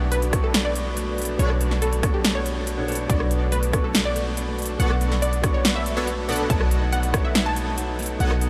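A deep, boomy 808-style bass with tube saturation sits up front under a dreamy, lush half-time future bass passage, where a punchy overdriven electronic kick that drops out at 7.2 s and a crisp, overdriven dance kit of snare, hi-hats and rim click drive the pumping pulse, while a detuned unison pluck carries the melody and a very quiet, airy supersaw stab plays a riff over a soft felt-muted upright piano and a ringing background concert harp arpeggiating, all bathed in huge ambient reverb as the Bm7 harmony turns to B7 at 6.5 s.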